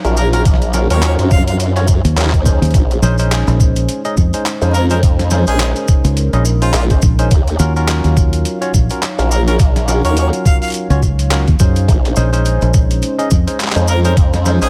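Swaggering and playful, this glitch hop excerpt swings on a gritty, pitched-down boom bap sampler kit of handclaps, hi-hat and snare, joined at 0.5 seconds by a thumpy electronic kick, with grainy maracas in the background. Up front, a detuned formant-sweep wobble bass with tube saturation wobbles beside a punchy, foam-muted fingered electric bass that enters at 2.0 seconds, while a moody analog pad with sidechain pumping sits behind them. Over Ebm9 and Bbm11 chords, a barky tine electric piano through a combo amp adds bright stabs with digital delay, and a warm harmonica carries a jazz-style solo melody with scooped notes and light vibrato.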